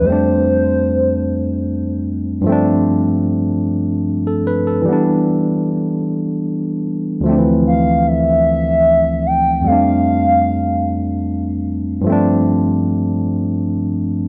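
This sultry, yearning slice of slow R&B in 6/8, cut from a longer piece, opens with a barky, bright tine electric piano and a hollow, clarinet-like synth lead sounding together, both placed up front. The electric piano carries the accompaniment throughout, its clean, direct tone spanning from deep bass notes up into the middle register as the chords move through F6/9, G9sus4, Em7 and Dm9 before circling back. The lead carries the melody in a narrow upper range, its woody, mellow voice built from square and triangle waves with a detuned edge, a noise layer, a soft attack, sustained notes, vibrato and a chorus shimmer. It falls away at 2.1 seconds, leaving the electric piano alone, then returns at 7.7 seconds for another yearning phrase. Light reverb and a dark, warm production give the whole passage an intimate, late-night glow, and the tuning sits slightly below standard pitch.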